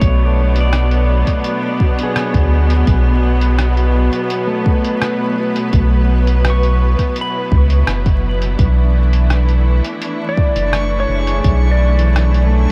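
A round, dark analog bass sits up front in this meditative, hazy ambient dub excerpt at 84 BPM in B dorian, holding under a distant bowed string section's sustained Bm9 chord while a bright pedal steel guitar plays arpeggios through dub echo, a deep electronic kick and a muffled, pitched-down sampler kit of hi-hat and rim click keep a straight 4/4 over vinyl crackle, and a reversed, granular swelling texture enters in the background at 9.6 seconds.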